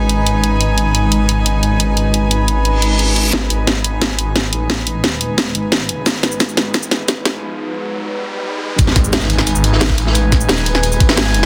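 A swirling, thick detuned saw bass with phaser and overdrive sits up front in this aggressive, tense slice of dark technical drum and bass, carried by a cracking snare, hi-hat and shaker, over a deep, warbling ambient pad that pumps with the sidechain and a distant, floating string section playing sul tasto. A filter sweep on the pad and a reverse cymbal lead into a build-up at 3.3 seconds, where a riser climbs, a knocking electronic kick enters in the background, a drum fill runs and a brief break follows. At 8.8 seconds the drop lands with an impact and a gritty, saturated breakbeat kit with a rolled-off top, all within moderate room reverb and a dense, heavily limited master.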